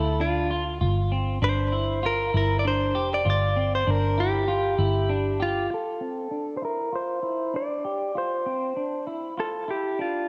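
Worn, warbling cassette tape with drifting pitch and a moderate concert-hall reverb gives this ethereal, melancholic dream pop fragment its hazy glow. A compressed, direct-recorded clean guitar carries the picked melody through spring reverb, low-pass filtering and tape echo, over arpeggios from a fingered semi-hollow guitar bathed in lush chorus and the same echo. A dark, round, foam-muted bass sits up front under Dm and G5 until 5.7 seconds, when it stops and a filter sweep colours the closing Dm7 passage.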